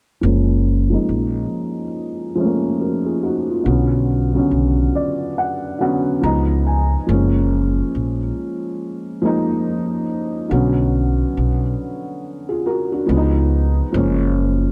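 Swung sixteenths in an unhurried 4/4 give this cosy, dreamy lo-fi hip hop fragment its lazy sway, with a felt-muted upright piano laying down soft, boxy chords from F#maj9 through Bmadd9 and C#9 while a woody, thumpy pizzicato upright bass on gut strings sits up front beneath it. A low-pass filter sweep colours the dark, intimate piano through the opening stretch, from 0.2 to 7.1 seconds, and a piano fill emerges from it at 4.5 seconds before the second section repeats the chord cycle. Light reverb lends the pair a close, mellow room.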